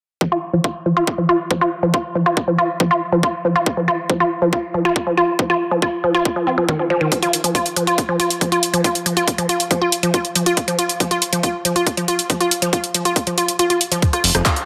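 A woody, wave-folded pluck carries the riff from the start of this intense, alien psychedelic trance passage, sitting up front between Eb3 and F4 with a percussive, organic bite, a short decay and a touch of chorus, tape echo and sidechain pumping. A filter sweep runs across the synth arpeggio through the whole section at 139 BPM in a straight 4/4, over an F5 chord. An overdriven, tight electronic kick drives beneath it from the outset, joined at 7.1 seconds by a layered electronic kit of handclaps, bright hi-hats and rim clicks, also overdriven and forward. The kick drops out at 13.6 seconds, and a fat, detuned sawtooth bass on F1 with tube saturation sounds only briefly at 14.2 seconds. A moderate room reverb surrounds the parts, and the master is dense and heavily limited, in this cut from a longer piece.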